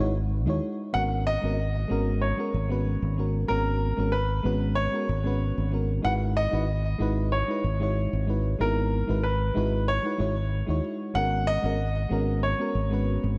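A smooth, wistful sunset chillout excerpt features a baby grand piano carrying the melody in a natural, short-sustained tone trailed by digital delay. Beneath it, a mellow FM electric piano plays a soft, round accompaniment with chorus, a cassette-tape noise layer and delay, while a punchy, direct fingered electric bass sits up front in the low register. The harmony sways between Emaj9/G# and G#m11 in a straight, unhurried groove, and a lush hall reverb with a dark, warm production gives it a dusky glow.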